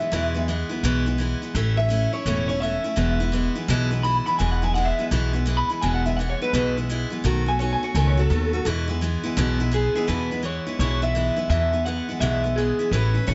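Driving swing eighths at 169 BPM in 4/4 push this upbeat, retro rockabilly fragment in E major, cut from a longer piece. An electric guitar through a small old amp carries the melody from the start, its twangy, slightly broken-up tone brushed with subtle chorus and tape echo as it plays a clean solo through the first 10.1 seconds. Beside it, a picked steel-string acoustic guitar sits up front in accompaniment, full-bodied and bright, with audible finger squeak on the strings. An upright bass enters at 0.1 seconds and stays prominent, its pizzicato gut strings giving a woody, thumpy pulse in the low register. The harmony moves from E to A, back to E, then to B7 before resolving on E, with a new section arriving at 10.1 seconds. Light reverb and small room ambience frame a top end that stays below 7.7 kHz.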